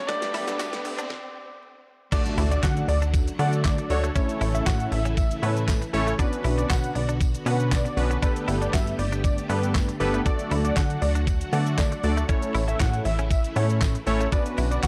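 A dry, gritty hardware recording with cassette-tape character, transformer saturation, a high-pass edge and a digital ambience frames this upbeat, carefree dance-pop passage, cut from a longer piece, in D major at 118 BPM in a straight 4/4. It opens on a short build-up: an intimate concert grand piano with audible action noise and tape echo plays a brief melody, a very quiet, lush unison pluck plays arpeggios, and the drums play a fill as an electronic riser sounds in the background, before a stop gives way to the drop at 2.1 seconds, marked by an impact. From there a thick, bold sawtooth unison lead with vibrato carries the melody, soon joined by a punchy, funky, wave-folded analog bass sitting up front, while round, detuned analog keys with chorus fill out the accompaniment, and the lead, bass and keys all pump with sidechain. The layered pop drum kit is up front with a knocking kick, fat snare, metallic hi-hats, handclaps, shaker and crash cymbal, joined by a jingly, very quiet tambourine. 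In the background, a shimmering vintage string machine holds sustained violin chords with ensemble chorus and sidechain pumping, and a twangy, direct-recorded clean electric guitar with analog chorus plays a riff, all over a cycle of Gadd9, D, A and Bmadd9.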